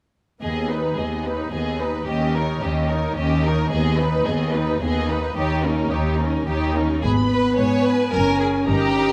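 A moderate scoring-stage reverb surrounds this short, restless passage from a quick classical-period movement for symphony orchestra, in G# minor and 3/4 at 109 BPM, with a stormy mood. Dark, lush first violins carry the melody with vibrato and portamento over clear, up-front second violins, rich violas in accompaniment and warm, expressive cellos on the bass, all bowed from 0.4 s, as the harmony moves between G#m/D# and D#7. At 7.0 s the music shifts to G#m and F#, where mellow French horns add soft-edged sustained chords and a focused, close double bass section deepens the low end.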